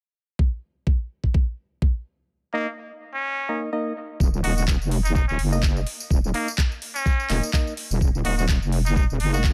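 Set in a digital ambience, this gritty, aggressive bass house excerpt opens at 0.4 seconds with an overdriven, knocking electronic kick sitting up front, shuffled by a light swing. At 2.5 seconds a nasal, straight-muted trumpet enters, playing a jazz-style solo line with vibrato and dub echo, alongside hollow, mellow organ stabs that pump through sidechain compression, chorus and echo. From 4.2 seconds a heavy, saturated wobble bass with a resonant, detuned edge drives up front, while an overdriven garage kit of handclaps, tambourine and metallic hi-hats fills out the groove.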